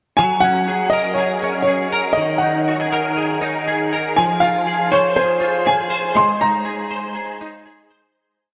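A steady, straight 4/4 pulse at 120 BPM carries this short, youthful and nostalgic indie pop piece, tuned slightly sharp to A4 = 441 Hz. An upright piano sits up front with the melody from 0.2 to 7.1 s, its woody, slightly detuned tone and audible action noise giving hook-based phrases between C5 and C6 an intimate character, touched by tape echo. Beside it, a direct-recorded clean electric guitar plays fingerpicked roll-pattern arpeggios from Eb3 to C5, bright, twangy and compressed with a scooped edge, treated with ensemble chorus and tape echo and lasting until 8.5 s. The whole span works as a pre-chorus over a progression of Gbadd9, Ebsus4, Fm and Abadd9, with a fade-out from 6.2 to 8.2 s. A huge ambient reverb with a 7.0-second decay soaks the mix, lending it a dreamy atmosphere.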